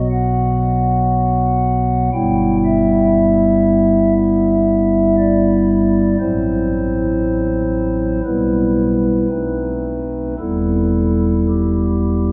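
Dark and solemn, this short chorale-style classical passage for pipe organ moves at a slow 54-60 BPM in 4/4, with a freely rubato feel in E minor, tuned slightly low to A4 = 438 Hz. A single stopped-flute organ voice plays alone for the full 12.3 seconds, spanning from a deep E1 up to G5 with a romantic voicing. Its flute stops give it a soft, hollow character, and it sits up front in the sound. The harmony opens on B5, settles onto Em/G at 2.1 seconds, darkens through F#m7b5/A and Em/B, and leans into a tense B7b9 before resolving to Em at 10.4 seconds. A wet cathedral reverb with a long 4.3-second decay surrounds the organ, and the passage is cut from a longer piece.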